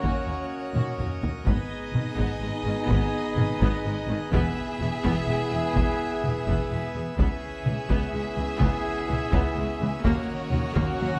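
A dramatic, dark cinematic film-score passage in triple metre, cut from a longer piece, where a short build-up with a drum fill opens onto the main section. The violins carry a lush, vibrato-rich melody over a distant second violin line, a smooth viola accompaniment, and a foundation of woody cellos and rich double basses, while a majestic full organ with brilliant mixtures and chiff and a warm horn section hold sustained chords under a dusky trumpet's stabs. Heavy-stick taiko drive the passage forward in a moderate scoring-stage reverb with a faint mains hum, and round soft-mallet timpani enter with a fill at 10.0 seconds.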